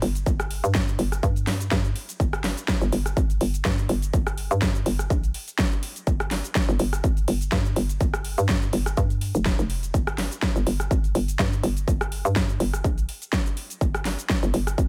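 A hollow, knocking FM bass anchors this aggressive, swaggering bass house cut, bouncing between F1 and G2 in G phrygian with a fast attack, a decaying tail and sidechain pumping, sitting up front in the mix. A big-room dance kit with a huge snare, metallic hats, rim click and shaker drives the 124 BPM groove in 4/4 with a 55% swing on the 16ths, joined at 0.3 seconds by a punchy, layered electronic kick. Both drum parts carry the sound of a re-recording in a small room, while the overall sound stays dry with little reverb across this short section cut from a longer track.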